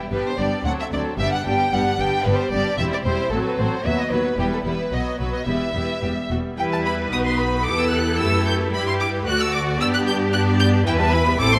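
Moderate scoring-stage reverb surrounds this lively, cheerful classical-period movement for string orchestra, a quick piece in 2/4 with a straight feel, cut from a longer work. The violins carry a lush, expressive melody with soft-attacked vibrato, while an up-front second violin line sits beneath and the violas supply smooth, even accompaniment. Focused, distant cellos and double basses anchor the bass, and the opening section begins again at 6.6 s.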